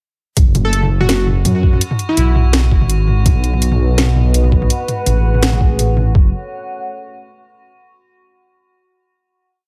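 A digital ambience wraps this short, dark and heavy half-time drum and bass piece at 166 BPM in F# dorian, moving through F# minor, E, B and G#m7 before settling back on F# minor. An overdriven, gritty, pitched-down electronic kick sits up front beside a deep, rumbling detuned saw bass that plays chopped phrases, while a sparse, overdriven kit adds cracking snare, bright closed hats and low toms with a lightly swung feel. A punchy, catchy plucky unison lead with a filter sweep and digital delay plays short phrases from 0.6 to 2.6 seconds, and a faint metallic, inharmonic drone holds an eerie high note, colored by chorus and its own reverb. A moody analog pad enters at 3.3 seconds with slowly shifting chords, carrying chorus, phaser, 12-bit sampler grit and sidechain pumping. The drop ends at 6.2 seconds, and the pad sustains the closing chord as the bass fades out just after.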